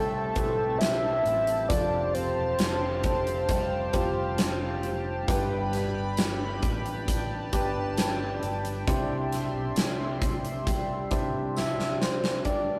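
Heartfelt and hopeful, this slow pop ballad at 67 BPM in C major moves through Am7, Fadd9, G and Cadd9. A round, mellow synth lead with chorus and vibrato carries the melody up front until 4.8 seconds and returns at 11.6 seconds, over a dark, long-sustaining baby grand piano, a shimmering, retro pulse-width pad, a very quiet fingerpicked nylon-string guitar, a round fingered electric bass and a jingly tambourine. The huge arena drum kit sits up front with a fat snare and punchy kick and plays a fill from 11.6 to 12.5 seconds, all captured in a rough rehearsal-room recording with moderate studio reverb.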